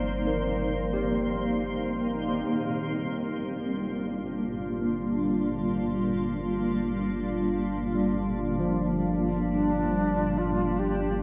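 Spacious and serene, this ambient excerpt moves at 69 BPM in 4/4 with a straight feel in G minor, cut from a longer piece. A cloudy, evolving granular pad holds sustained chords up front, its blurred, full-bodied tone carried by built-in reverb, while a bright, barky tine electric piano plays clean arpeggios through tape echo. Beneath them a deep, round sub bass sits on a low G and fades in from 2.5 seconds, as the harmony shifts from Cm7/G to Gm7. A twinkling, sparkling granular texture with an octave-up shimmer glints above only until 2.5 seconds. At 9.5 seconds an airy alto flute enters up front with a crisp attack, vibrato and an expressive line. The whole sits in a huge, wet ambient reverb with a dark production.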